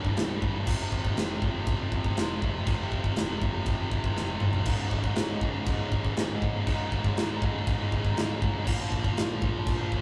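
A rough rehearsal-room recording with light reverb frames this dark, aggressive heavy metal passage in straight 4/4, cut from a longer piece. Two high-gain, distorted electric guitars pick a low riff over a growly, fuzz-soaked fingered bass that sits very quiet in the mix, while a polished, airy big-room acoustic kit sits up front with bright china and crash cymbals, a medium-tuned snare, a tight kick and toms. A drum fill at 4.2 s carries the chords from C5 and F5 to Db5, with a move to Bb5 at 8.7 s.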